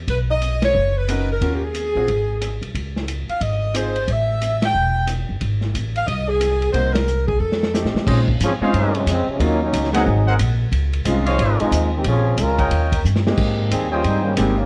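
The recording has a dark, warm production with light reverb and some lossy compression artefacts, capturing an energetic, brassy big band swing passage cut from a longer piece. A woody, thumpy pizzicato upright bass sits up front throughout, while a muffled vintage drum kit with a punchy kick, a medium-tuned snare and a rolled-off top plays hi-hat, ride, rim click, snare and crash, marking band accents and adding a fill at 7.4 seconds. A clear, close-miked saxophone section carries the melody with vibrato through the first half, and a brilliant grand piano adds accompaniment in intermittent spots. From 8.1 seconds mellow, smooth-topped trumpet stabs enter, and at 8.4 seconds the tight trombone section joins with a solo line played with light vibrato. The harmony moves through rich jazz chords such as major ninths, minor elevenths and dominant sevenths before settling on a major seventh.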